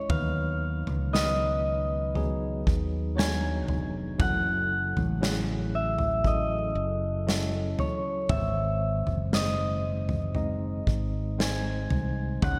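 A pop ballad with an emotional, longing mood: an up-front, thumb-plucked Celtic harp carries the ringing melody over a clean tine electric piano heard through its built-in speakers and a warm, direct fingered electric bass. An acoustic drum kit played with bundle sticks sits up front, its punchy kick, medium-tuned snare and toms dressed in gated reverb. A lush hall reverb and bright 1980s-style digital production surround the parts as the chords move from B to F#m7 at 4.2 seconds and to G# at 8.3 seconds.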